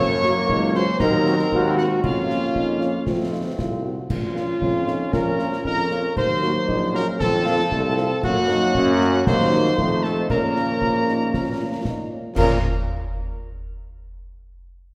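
A stern, resolute military-style march for wind band in a straight 2/4, where a mellow cornet carries the melody while a hollow, vibrato-tinged piccolo, a mellow woodwind section and a distant, roomy euphonium add second lines over sustained chords from a tight trombone section, a vintage-toned tuba bass, background French horns entering at 0.2 s, and snare, bass drum and dark clash cymbals, all heard from further back in a reverberant scoring stage.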